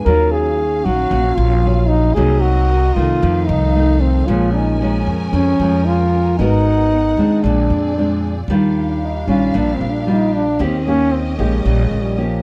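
A dark, thumb-plucked nylon-string guitar and a distant, lush bowed string section open this relaxed, sophisticated bossa nova excerpt at 114 BPM, joined at once by a woody, growly pizzicato upright bass and a mellow, up-front trombone whose scooped notes and light vibrato carry the melody into a solo from 8.5 s, where the music settles into Eb major under light reverb.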